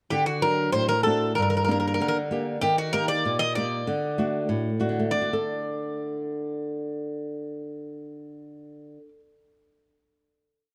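This short Greek folk piece for a bouzouki band moves at 96 BPM in a straight 2/4, with a bittersweet, cool mood and tuning set slightly high at A4 = 443 Hz. The acoustic Greek bouzouki carries the modal, ornamented melody from F#4 to Eb5, its picked double strings ringing with a metallic edge and some octave doubling. Beneath it, a fingerpicked acoustic flamenco guitar plays an oompah accompaniment of bass notes and chord figures, with finger squeak audible. Both instruments sit up front throughout. The harmony moves from D through Gm and Eb back to D, then settles onto a D5 final chord at 5.1 seconds, with the parts ending just after 9 seconds. A moderate plate reverb and a dark, warm production give the whole piece an enveloping tail.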